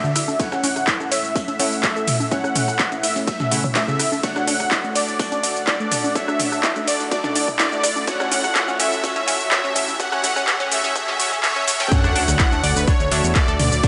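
A straight 4/4 pulse at 125 BPM drives this expansive, hopeful progressive house excerpt in D major, where a punchy layered kick, an overdriven deep house kit with metallic hats up front, a very quiet gritty breakbeat sampler-style kit, dry electronic congas and toms, and a faint riser and sub drop underpin a smooth detuned soft supersaw melody with dub echo, a mellow background pad, a round, nasal analog pluck arpeggio with phaser and chorus, and airy supersaw stabs, all pumping through a build-up whose filter sweeps on the arpeggio and supersaw run to 11.9 s, when an impact marks the drop on Dmaj7 and a fat, detuned sawtooth bass with tube saturation arrives at 12.0 s, the whole mix bathed in huge ambient reverb.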